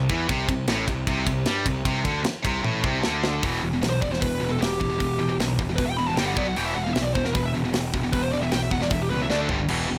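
Heavy metal with an aggressive, epic mood, cut from a longer piece, where two bright, picked distorted guitars riff in the background over a growly, punchy fuzz bass and an up-front, tight acoustic drum kit with a medium-tuned snare, and a drum fill at 2.6 seconds leads to a dark, high-gain lead guitar with tape echo soloing from 3.9 seconds in a dry-sounding studio room.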